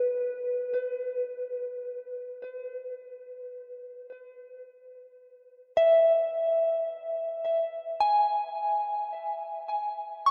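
A soft FM synth bell plays alone, up front for the full 10.3 seconds, its pure, mellow tones striking with a fast attack and decaying gently between B4 and C#6, colored by chorus and tape echo. This spacious, reflective ambient fragment, cut from a longer piece, floats in free time inside a huge, wet reverb with an 8.4-second tail. The production is dark, with lossy compression artefacts.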